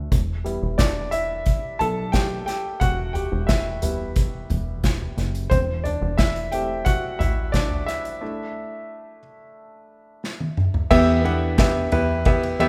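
Earnest and driving, this piano-led pop cut from a longer piece puts a clear, intimate grand piano up front, its hammer action audible and its notes short in sustain as it carries a solo from the opening. Beneath it, a plucky analog bass built from sawtooth and pulse tones with ring modulation gives a funky, mellow low end that keeps evolving. The acoustic drum kit sits up front too, played with bundle sticks: a punchy kick, a medium-tuned snare, toms and dark cymbals. The harmony moves from E minor to A minor over E and then to Dsus2, where a break begins at 8.2 seconds, and a drum fill at 10.2 seconds leads back to E minor. At 10.9 seconds a full-bodied, fingerpicked dreadnought steel-string guitar enters with a riff in the background, all of it set in a moderate recital hall reverb that suggests a church or concert hall.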